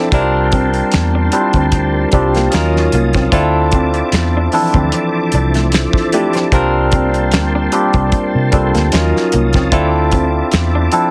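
Smooth and sultry, this short neo-soul and R&B cut rides a lightly swung groove, cycling through C7sus4, Ebm9 and Dm9 chords. A barky, bright tine electric piano with phaser sits up front over a punchy, foam-muted fingered bass and a damped 70s kit of finger snaps, hi-hat, tight kick and fat snare. A clean tonewheel organ holds sustained chords with key click, chorus vibrato and slow rotary speaker, while a slightly broken-up, lo-fi picked guitar adds a second line in the background, all squeezed into a dry, heavily compressed radio sound.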